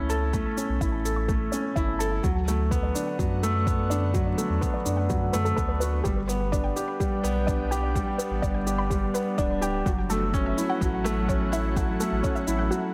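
Set in light reverb and a digital ambience, this luminous, hopeful piano-and-strings electronica runs at 126 BPM in a straight 4/4, moving through A, D6, G and F#m7 in a short section cut from a longer piece. A soft, felt-muted upright piano sits up front with a riff, its audible action noise and intimate tone shaped by a low-pass filter and delay. Beneath it, a round sine sub bass and a lush, detuned unison pad both pump with the sidechain; the pad fades in across the 12.9 seconds in the background, while a very quiet, bright analog pluck spins arpeggios over a deep, layered electronic kick and a tape-tinged shaker.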